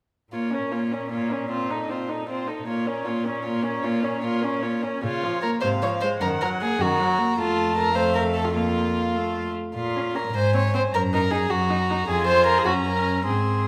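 A reverberant recital-hall sound and gut-string, period-style tone frame this restless, dramatic passage from a quick classical-period movement for string quartet in B-flat minor, moving in 6/8 at 102 BPM. The first violin carries the melody high with light vibrato, while the nasal, airy-bowed second violin sits close and up front with its second line, louder than the melody; a distant, reedy viola supplies accompaniment, and a rich, forward cello holds the bass. All four bowed parts play together from 0.3 to 13.7 seconds, with a new section beginning at 5.0 seconds and the harmony closing on G-flat.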